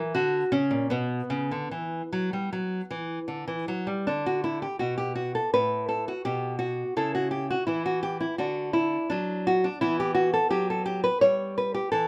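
A solo nylon-string guitar, fingerpicked and warm with a small, up-front tone, carries this short classical excerpt, a serene, flowing baroque-style dance in 4/4 at a rubato 74-87 BPM. It opens in B minor, moving from F# to Bm, then turns to D major at 4.1 s and passes through C#madd11, D and Em before the 12.1 s cut. A moderate small-room reverb surrounds the guitar, giving the impression of a live performance in an intimate space.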